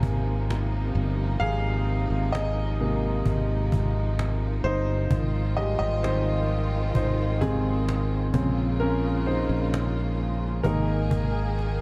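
A dark, warm studio production with reverb frames this tender, hopeful pop ballad, cut from a longer piece and moving in a straight 4/4. An intimate concert grand piano, up front with deep bass and audible action noise, carries a solo through the whole passage. Behind it, a rich, close string ensemble holds smooth, bowed chords with vibrato. A punchy, direct fretless electric bass with analog chorus sits low beneath the harmony, while a woody cajon, played with hard hands in a live room and touched by faint snares, keeps time and adds a fill at 11.6 seconds. The harmony moves from Abadd9 through Fm7/Ab and Bbm7 to settle on Absus2.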